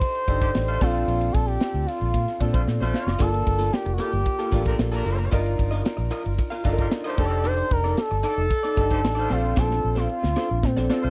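A straight 4/4 groove at 113 BPM drives this slick, bittersweet slice of polished 1980s jazz-funk pop, cut from a longer piece. The tight funk drum kit sits up front with bright cymbals, a medium-tuned snare and a tight kick, adding fills at 2.7 and 9.6 seconds, while a vintage foam-muted fingered electric bass, dark, round and punchy, anchors the low end. Over this, an expressive synth lead carries the melody with a smooth, nasal, mellow sawtooth-and-triangle tone, sustained with vibrato and chorus, and a clear concert grand piano with deep bass and analog chorus supplies the chords. A tight pop-style horn section with light vibrato plays a second line, and at 3.2 seconds an electric guitar through a small old amp enters with a slightly broken-up, lo-fi, compressed riff coloured by analog chorus. The harmony moves through lush chords such as F13, Bbmaj9, Gm9 and Ebmaj9#11/G. The sound is dry and close, like a 1970s-style studio with little reverb, and the instruments are tuned slightly flat of standard pitch, at A4 = 435 Hz.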